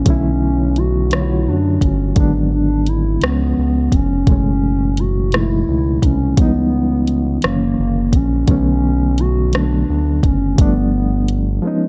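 This is a slow, sultry R&B fragment in six-eight, with a yearning mood. A hollow, woody synth lead carries the melody, its soft attack and sustained notes shaded by chorus, vibrato and a slapback echo. Beneath it, a reedy, clean electric piano plays the accompaniment with a fast tremolo, moving through jazzy chords such as Bm11, G#m7b5, F#m11 and F#7b13 before settling on G9. A smooth, sawtooth-tinged synth bass sits up front with a quick attack and long, mellow notes. An electronic drum kit keeps time with a soft kick, hi-hat and rim click, all close and present. The whole production is dark and warm, its top end gently rolled off and wrapped in digital ambience.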